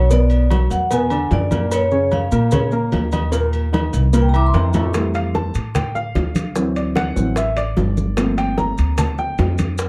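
A dark, softly reverberant production frames this sunny, danceable slice of Afro-Cuban jazz in a straight four, cut from a longer piece. Struck with medium hard mallets and touched with tape echo, the vibraphone carries the opening melody with a metallic, ringing tone and a smooth finish. Just after a brief drum fill, at 4.9 seconds, the intimate baby grand piano, which has been comping from the start, takes over with a solo of its own, its action noise audible and its notes short in sustain. Underneath, a woody, growly upright bass sits up front, and thick-skinned congas resound in a live room. Tight, high-tuned cowbell and bongos, metal-shelled agogo bells and timbales, and grainy, mellow maracas complete the percussion, while the harmony moves through colourful chords such as E9 and Gbmaj7 before the piano's passage settles over Fmaj7, D7 and Gm11.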